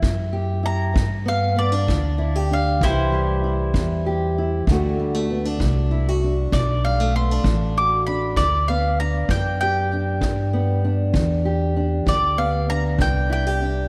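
A slow 12/8 pulse at 65 BPM sets a swaggering, laid-back groove for this short acoustic country blues cut from a longer piece in G major. A pizzicato upright bass with gut strings sits up front, woody and thumpy, while a distant, roomy kick drum played with brushes adds a punchy low thud with a rolled-off top. A dark, boxy parlour steel-string guitar, fingerpicked and up front, carries the accompaniment through a progression that opens on a rootless C before moving through G, C and D. The mellow, round mandolin enters at 0.7 seconds, its double strings picked and placed up front and treated with tape echo, then takes a solo from 8.4 seconds as the music shifts to its second section on G. A lush hall reverb soaks the whole mix in a dreamy haze.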